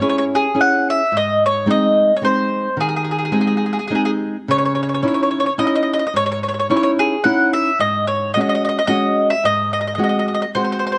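Italian folk serenade in 3/4 at 108 BPM with a light swing, passionate and romantic in C# harmonic minor, where an up-front picked mandolin carries the melody with a mellow, round double-string tone over a small, warm fingerpicked nylon-string guitar accompaniment, both playing from 0.0 to 11.0 seconds through C#m, G#, C#madd9 and G#7sus4 to G#7, captured with close, detailed microphones and light reverb in this short passage from a longer piece.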